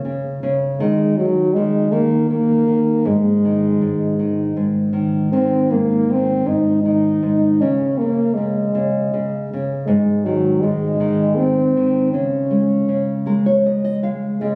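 Captured on a phone in the room with moderate concert hall reverb, this gentle, sleepy children's lullaby excerpt in 3/4 at 80 BPM, tuned to A4 = 436 Hz, pairs a dark, woody, thumb-plucked nylon-string guitar accompaniment with a mellow, soft-attacked French horn melody that enters at 0.8 s sounding distant and roomy in a classical style, before the guitar adds a fill at 12.9 s.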